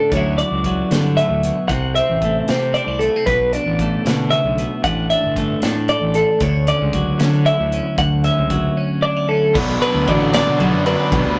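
Two bright, twangy twelve-string electric guitars lead this wistful math rock and midwest emo passage in 6/8, one picking high arpeggios up front while the other picks clean, compressed accompaniment through spring reverb over chords such as Dmaj9, C6, Bm7 and A7sus4. A growly, fuzz-laden fingered bass and an airy, polished studio drum kit with a punchy kick and medium-tuned snare carry the pulse. At 9.5 seconds a double-tracked, overdriven stack guitar riff enters on Bm7, all captured in a rough rehearsal-room recording with tube saturation and moderate studio reverb, cut from a longer piece.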